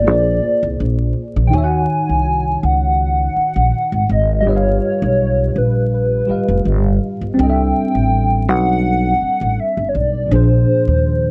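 Riding a lightly swung 16th-note groove at 82 BPM in 4/4, this smooth, soulful neo-soul R&B excerpt moves through Bb7, Ebm7, G7alt and C69 harmony, anchored by an up-front, growly pizzicato upright bass with a thumpy, woody tone. A worn, slightly out-of-tune tine electric piano comps underneath, mellow and clean through a combo amp and thickened with ensemble chorus. A hollow, nasal, detuned square lead carries the melody with dark vibrato, chorus and slapback echo, all set in light reverb under vinyl crackle and a muted top end.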